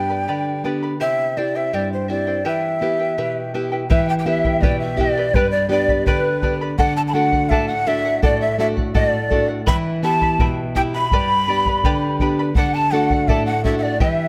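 A close, detailed recording with light reverb carries this melancholic, earthy Andean folk passage in E minor at 83 BPM in 2/4, where a breathy, mellow wooden quena with vibrato and a crisp, chiffy attack leads over a shimmering fingerpicked charango and a full-bodied nylon-string guitar up front, before a reedy bamboo pan flute and a deep, dry bombo join at 3.9 seconds.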